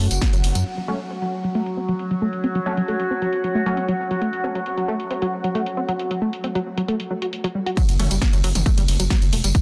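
Set in a moderate, huge ambient reverb and heavily limited, this hypnotic, industrial peak-time techno excerpt in F# minor at 135 BPM drives a tight, detuned sequenced synth riff with cassette-tape saturation and delay through a long filter sweep, over a deep, dark pad, a resonant overtone-sweeping drone, punchy analog drum-machine hats, snare, tambourine, ride and toms, and a thick rave stab in the background, until the drop at 7.8 s brings back the overdriven kick and the gritty, saturated synth bass.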